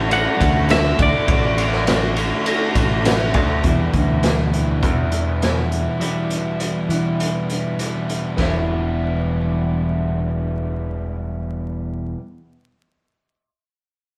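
A raw garage drum kit drives a straight 101 BPM in 4/4 for this restless, moody indie rock excerpt in E minor, its punchy kick and medium-tuned snare sitting up front with a gritty, saturated, pumping small-room sound until about 8.5 seconds, while a very quiet jingly tambourine joins only for the opening few seconds. A crunchy overdriven guitar and a clean, twangy, compressed twelve-string electric guitar play the riff throughout, over a growling fingered electric bass with overdrive, as a second twelve-string carries a short melody in the background until 3.3 seconds. The band plays live in one stone room with moderate reverb and a layer of vinyl crackle, the harmony moving from D to Em7 at 3.6 seconds.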